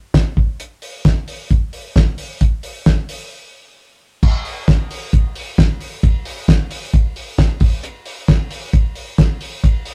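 Breezy and bright, this indie pop fragment cut from a longer piece moves at 133 BPM in a straight 4/4. The only part is a cloth-damped drum kit, thuddy and dry, playing from 0.1 to 9.9 seconds with kick, snare, hi-hat, ride and crash cymbals. Its fat snare and tight kick sit up front, while the dark cymbals and rolled-off top keep the kit smooth and muted. A break arrives at 3.3 seconds, closing the opening section before a second section takes over at 4.2 seconds. The sound is a rough rehearsal-room recording with tube saturation and moderate studio reverb, giving the kit a gritty, roomy edge.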